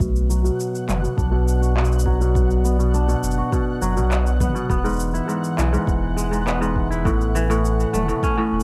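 A steady, straight 4/4 pulse comes from a soft, overdriven electronic kick and an organic electronic kit of cabasa, handclaps and toms, both with the boxy air of a small room, giving this wistful, autumnal folktronica fragment its unhurried gait. Up front, a bright, crisp kora rings out fingerpicked arpeggios through a delay, with a low-pass filter sweep running across the whole passage. Beneath it, a round, sine-like sub bass sits deep and forward, its fast attack thickened by tube saturation. In the background, a warbling, lo-fi tape-style pad holds slow-blooming chords with chorus and reverb, moving from Bm to E at 4.7 seconds and A at 7.1 seconds. From 0.4 seconds a faint, flickering granular texture adds a grainy, mellow shimmer high above, lending the dark production a nostalgic haze.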